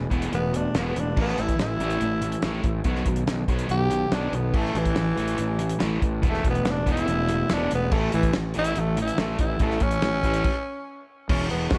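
Two overdriven, picked electric guitars open this swaggering, sunny classic rock excerpt, one sitting in the background and the other, a sludgy, very quiet part, playing its own riff lower down, while a fuzz-drenched fingered bass growls low with a bright, amped bite. A damped 70s drum kit joins at 0.1 seconds, dry and up front, with a fat snare, tight kick, rolled-off top and crash cymbal and hi-hat accents driving a straight 4/4 at 142 BPM. From 0.3 seconds a growling tenor saxophone takes the solo spotlight, breathy, raspy and punchy with light vibrato and a pop-style edge, its sound trailed by tape echo. The band moves through Esus4, A5, B and A, and a stop from 10.5 to 11.3 seconds punctuates the phrase. A moderate large studio reverb and a touch of small room ambience give the mix a lively glow.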